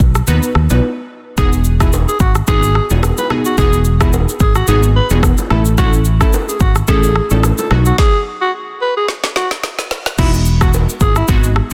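A raspy, gritty alto saxophone with vibrato and a touch of delay carries the solo melody from 1.4 s in this breezy, sunny afrobeats excerpt in E major at 109 BPM, with a gentle 16th-note swing. Beneath it, a round, up-front fingered electric bass and a layered deep house kit, with a deep kick and a woody, softly clipped snare, drive the groove, while glassy, detuned digital keys with chorus and a filter sweep fill out the harmony. Distant congas and bongos sit in the background, and the band pauses at 8.0 s before a drum fill leads into the closing section at 10.2 s.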